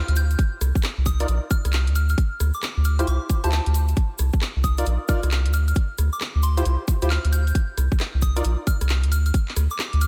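A soft, pure FM bell opens this moody, skippy two-step garage excerpt, drifting high through chorus, phaser and diffuse delay, before a deep, round sub bass arrives up front together with a layered garage kit of handclaps, hi-hats and rim clicks. A grainy shaker sits in the background, and a tight, overdriven electronic kick enters from 0.4 seconds. Hollow, percussive organ stabs enter at 1.2 seconds, shimmering through ensemble chorus and delay over minor-eleventh and suspended chords, all in light reverb.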